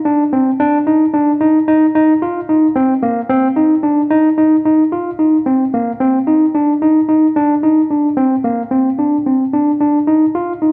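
Progressive instrumental in a brooding, intricate 5/8, this short cut from a longer piece features a barky tine electric piano soloing from 0.1 to 10.7 seconds, lightly overdriven through a combo amp and placed up front, its mid-register lines shifting into a new section at 4.7 seconds as a wet stone room reverb surrounds what sounds like a band playing live together.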